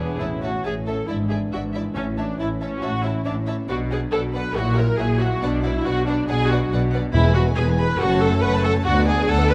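Closely and crisply captured in moderate concert-hall reverb, this stormy, dramatic fragment of a quick classical-period orchestral movement, played with rubato, places a rich, up-front viola section over focused double basses and smooth, even cellos, while mellow French horns hold sustained chords, a dark, woody second violin line and a vibrato-laden violin melody sit in the background, and very quiet, round timpani sound from 0.2 to 2.6 seconds and again at 7.1 seconds.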